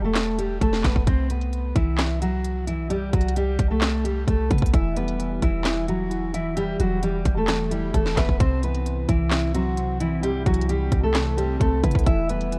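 Worn, warbling cassette-tape character with drifting pitch colors this menacing, melancholic half-time trap excerpt from a longer hip hop piece. Up front, a full-bodied jumbo steel-string acoustic guitar with fresh strings carries the fingerpicked melody with audible finger squeaks, softened by a low-pass filter and tape echo, over a deep, boomy sine 808 bass and an electronic kit of hard-clipped kick, sharp snare, crisp hats and handclaps. At 4.7 seconds a dark, clean electric guitar joins quietly beneath as accompaniment, thickened by analog chorus and filtered, as the harmony moves between E minor and C.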